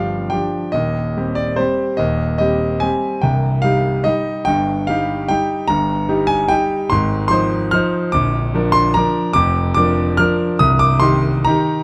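A bright concert grand piano plays alone through this sparkling, elegant classical waltz excerpt in C minor at 146 BPM in 3/4, its brilliant, smooth, vintage tone sitting up front with deep bass reaching down to Bb0, the uneven beats and rubato giving the dance a supple lilt as the harmony moves from G7 through Cm and Fm7/Ab to Bb before settling on Cm at 10.6 seconds, all captured by close, detailed microphones in light reverb.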